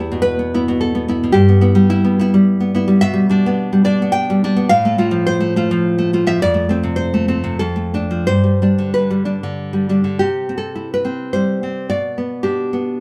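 Nostalgic and warm, this romantic piece for solo classical guitar moves in a rubato 3/4 somewhere between 88 and 111 BPM in C major, tuned slightly flat of standard pitch. The nylon-string guitar sits up front with a full-bodied, deep classical tone, fingerpicked across a range from E2 to G5, its harmony drifting from E minor through G, F and D minor before arriving at C at 10.2 seconds. A moderate studio reverb gives the short excerpt a natural sense of room, as though captured live, and it is cut from a longer work.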